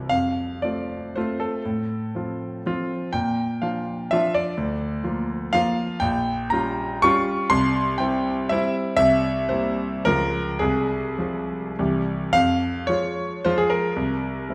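Nostalgic and capricious, this short passage from a longer piece is a romantic triple-time dance for solo grand piano, shaped by dotted rhythms and a flexible, rubato feel. The piano sounds clear and natural, sitting up front while spanning a broad range from deep in the bass to its upper register. At 6.0 s the harmony darkens, lending the dance a wistful shade as it moves toward its close. A new section begins at 12.3 s and carries the piece on until the recording breaks off at 14.5 s. A generous recital-hall reverb surrounds the instrument, and the room is heard from further back, giving the performance a sense of space.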